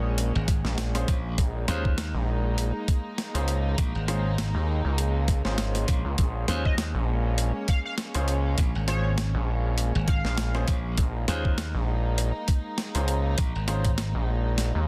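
A gritty, aggressive sawtooth synth bass with oscillator sync and tube saturation drives this swaggering glitch hop excerpt in Bb minor at 100 BPM, joined up front by a bright, punchy electric slap bass and a thumpy, pitched-down sampler kick. A compressed boom bap kit with a high-tuned snare and hi-hat swings its 16ths, while a brilliant baby grand plays stabs roughened by 12-bit sampler grit, dub echo and sidechain pumping over distant, reedy bowed strings holding pumping chords. An edgy, tearing sync lead with chorus and vibrato sits in the background from 6.7 to 10.6 seconds, and a drum fill lands at 14.6 seconds in the dry, densely limited mix.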